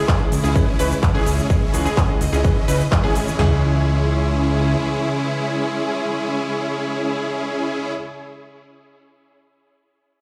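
An overdriven, punchy big-room dance kit of kick, snare, toms, handclaps, crisp hi-hat, ride cymbal and cabasa drives this anthemic, euphoric festival progressive house drop until 3.5 s, while huge, bright supersaw chords carry the riff with tape echo and sidechain pumping. A fat, thick analog bass with tube saturation pumps underneath until 4.8 s, and behind it sit a detuned unison pluck playing arpeggios, a clear, intimate grand piano accompaniment with audible action noise, and bowed symphonic strings holding lush sustained chords with vibrato. The whole cut sounds as if played on a big sound system in a bare stone room, giving it a light, reverberant air.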